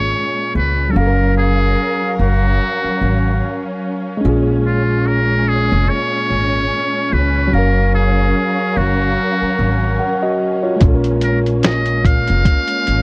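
A muted trumpet carries the melody of this nostalgic, dreamy lo-fi hip hop excerpt from the first moment, its buzzy, breathy, whispered tone and soft attack placed intimately up front in a vintage jazz style. Beneath it, a bright tine electric piano with a cassette-tape coloring plays accompaniment, a lush bowed string section holds sustained chords with vibrato, and a woody pizzicato upright bass anchors the low end. The harmony moves between A#m7 and F#maj7 in F# major at a relaxed 73 BPM in 4/4 with a swung sixteenth feel, tuned to A4 = 445 Hz. At 10.8 seconds a compressed, sampler-style drum kit enters with a thumpy kick, a medium-tuned snare and hi-hat, all muffled, and plays until the excerpt ends at 13.0 seconds. The dark production uses very little reverb, keeping the sound close and dry.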